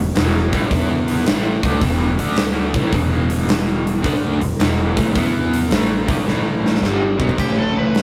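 A raw, double-tracked garage guitar drives this gritty, raunchy blues rock and southern rock excerpt, its overdriven, picked riff colored by tremolo over a swung 4/4 feel as the chords move from E5 through D5 to A5 and Gmaj7. A woody pizzicato upright bass sits beneath a huge arena drum kit with bright cymbals, a punchy kick and a pumping room sound, which enters at 0.2 seconds and plays a fill from 6.3 seconds. At 7.4 seconds a nasal lead guitar with a parked wah slips in with a brief melody through its own overdrive, all captured in a rough rehearsal-room sound with light reverb and saturation.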